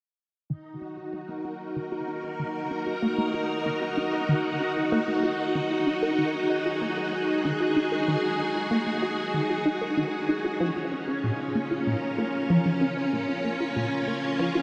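A lush, vintage string machine sits up front with sustained Eb minor chords through ensemble chorus, shifting to Bb minor at 10.6 seconds in this hypnotic, cosmic ambient excerpt at 95 BPM in 4/4. Beneath it, a squelchy, resonant blip pluck repeats a riff through phaser, subtle chorus and delay, both parts playing from 0.5 to 14.6 seconds. A huge, wet reverb with a long 8.4-second tail surrounds them.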